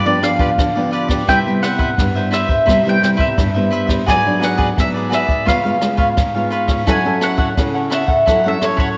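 A moderate echo-chamber reverb with a 2.2-second decay gives this brief, lively cut of samba and choro a roomy glow. At 86 BPM in a straight 4/4, a mellow, round mandolin carries the melody on picked double strings, sitting between C#5 and G#5. A bright, crisp cavaquinho picks the accompaniment above a dark, thumb-plucked nylon-string guitar whose deep classical tone sits up front in the mix. A jazz kit played with brushes enters at 0.1 seconds, adding hi-hat, rim clicks and a boomy kick with a natural studio-room sound. The harmony moves from G7 to Cmaj7, then through G#m7b5 and C#7 to F#m7, keeping the playful mood buoyant.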